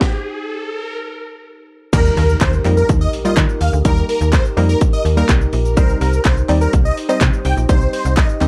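A straight 4/4 house beat at 125 BPM drives this summery, upbeat dance-pop excerpt in Eb major, its punchy kick, cracking snare, handclaps, hi-hat, shaker and crash coming from a tape-warm, up-front drum kit, while an electronic riser carries the short build-up before an impact lands on the drop at 1.9 seconds. There the snappy, metallic slap-like FM bass enters up front alongside crisp, wave-folded wavetable chord stabs with a filter pluck, both pumping to the sidechain, as huge, lush supersaw chords carry the melody through plate reverb. A glassy, ethereal glass harmonica joins at 2.1 seconds with slow-attack sustained chords, and a very quiet, close and dry group handclap adds a human touch from 2.4 seconds as the harmony moves from Eb to Cm.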